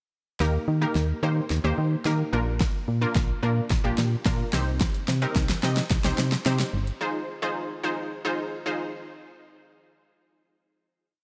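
Dance-pop at 109 BPM in F dorian, this confident, energetic piece is one continuous build-up from 0.4 to 9.2 seconds, moving through Eb, Bb and Cm to land on Fm7. A layered electronic kit drives a four-on-the-floor beat with a punchy kick, fat snare and bright hats, playing a drum fill until about 7.0 seconds, while a round, dark FM octave bass pumps against the sidechain. Above them a lush, detuned sawtooth unison pluck with a filter sweep and subtle chorus plays syncopated close-voiced chords, all set in light reverb and digital ambience with a bright 1980s-style digital sheen.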